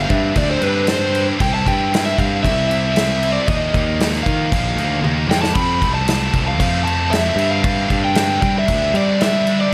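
Wistful yet upbeat, this short indie rock passage from a longer piece moves at 115 BPM in a straight 4/4. An overdriven semi-hollow guitar carries the melody between B4 and B5, its warm, hollow-bodied tone wrapped in spring reverb, plate reverb and analog delay. Beneath it, a bright, scooped high-gain guitar plays a double-tracked, picked riff, while a round, fuzzy electric bass sits up front with overdrive. A big rock kit with a punchy kick, medium-tuned snare, toms and bright crash cymbals drives the groove, marked by a drum fill from 5.0 to 5.6 seconds. The chords move from Gsus4 through C, Ebsus2 and F before returning to Gsus4, all set in a moderate studio reverb.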